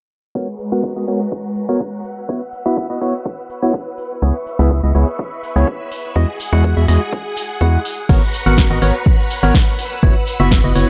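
Bittersweet and soulful, this piano house cut at 124 BPM in G# minor sets a hollow, percussive organ stab riff with lush chorus and dub echo under a filter sweep against shimmering, vintage string-machine violin chords, all pumping to the sidechain over chords moving from G#m11 through F#7sus4, C#m7 and Emaj9. A tape-warm, punchy electronic kick sits up front with an analog drum machine supplying snare, hi-hat, shaker and crash, and at 4.2 seconds a dark, organ-like FM bass arrives up front alongside a distant tambourine in the background. The production is dark with light reverb and a low-pass filter, and the passage moves into a new section at 8.1 seconds, cut from a longer piece.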